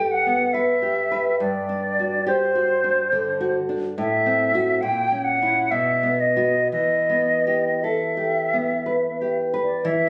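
A silver concert flute and a fingerpicked nylon-string guitar begin together in this short, lyrical fragment of a romantic duo, both placed up front. The flute carries a serene melody in a pure, softly attacked tone with vibrato, while the guitar gives classical accompaniment in a warm, acoustic voice beneath it. The music moves in a flexible, rubato triple metre, and the harmony drifts from G and D7/G through F#m7b5/A and A#dim7 to B before settling on E minor at 6.7 seconds. Moderate recital hall reverb surrounds the pair, with an added club reverb and compression colouring the phone recording made in the room. The passage is cut from a longer piece and ends at 10.1 seconds.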